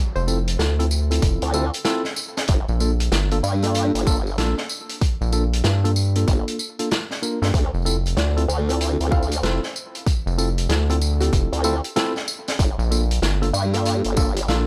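Playful and gritty, this glitch hop excerpt swings over Dm7 and Gm7 as a very quiet downlifter plays until 2.5 seconds, a punchy layered electronic kick and a warm vintage kit with hi-hat, snare and tambourine drive a rubbery, bouncy square bass and a detuned formant-sweep wobble bass, while clean tine electric piano stabs carry 12-bit sampler grit, sidechain pumping and dub echo, and a woody wave-folded pluck with chorus and dub echo sits dark in the background, returning at 8.2 seconds, all in a small room.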